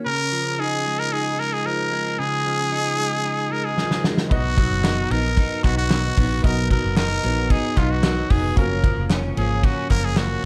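A growling, raspy trumpet sits up front over a twangy clean electric guitar's arpeggios in this breezy, nostalgic jangly indie pop excerpt at 113 BPM, with a loose drum kit entering on a fill at 3.8 seconds before round, foam-muted bass, fingerpicked acoustic guitar, a woody, slightly detuned upright piano and crisp background handclaps join over chords moving from C#add9 to B and F#maj7 in a dark production with light reverb.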